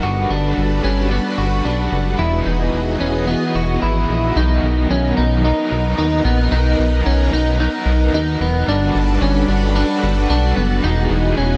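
A glossy, chorused synth bass sits up front in this dreamy, floating dream pop excerpt, its pulse-wave and sawtooth tones shaped by a filter pluck and held with a mellow, evolving character. A clean, compressed electric guitar picks arpeggios through analog chorus and digital delay, while a vintage string machine voicing violins spreads shimmering, warbling chords with slow attack and long release, and a bright, overdriven garage guitar, double-tracked with tremolo, sits in the background. Over major-seventh chords moving from Gmaj7 and Emaj7 to Bmaj7 at 4.4 seconds, the dark, warm production wraps the music in light reverb and digital ambience.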